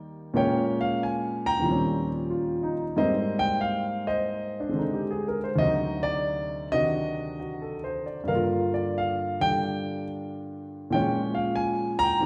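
Heard through the wet reverb of a recital hall, this excerpt of solo jazz features an intimate, natural-sounding grand piano placed up front with its action noise audible, swinging with a free rubato feel through rich chords such as Bbm7, Eb13, Abmaj9, D7b9 and Gm7 in a warm mood.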